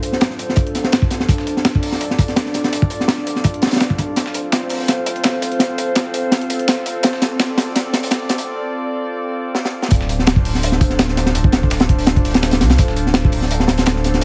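A crunchy breakbeat kit sits up front in this dark, nostalgic drum and bass cut at 167 BPM in D minor, its punchy kick and high-tuned snare sounding gritty and saturated with a rolled-off top, as if played in a small room. Behind it, a dusty sampler-style kit with a medium-tuned snare adds tape-warm, compressed texture from the background, its hi-hat and snare thinned by filtering and set in a large-room re-recording. A thick, deep sub bass with a triangle tone and fast attack holds down the low end, while a warbling, detuned pad of sawtooth and triangle waves drifts over a lone Dm7 chord, lo-fi and mellow with chorus, reverb and vintage 12-bit sampler grit. The passage builds up with drum fills from 4.2 seconds, pauses for a brief break at 8.5 seconds, and drops at 9.9 seconds. Over the whole mix, a heavily compressed, radio-like filtered sound and light reverb give this fragment of a longer piece a hazy, old-broadcast feel.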